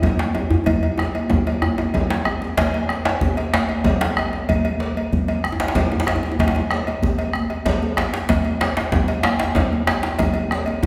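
Festive and powerful, this short cut from a longer West African traditional drum ensemble piece rolls along at 126 BPM in a straight 12/8, with a round bombo, bright high-tuned congas struck with hard hands, a metallic cowbell and two up-front djembes, one deep and distant, the other medium-tuned and hit hard, all playing from the start, a drum fill running from 0.7 to 2.6 seconds before the second section takes over, and the whole ensemble set in the lingering reverb of a recital hall.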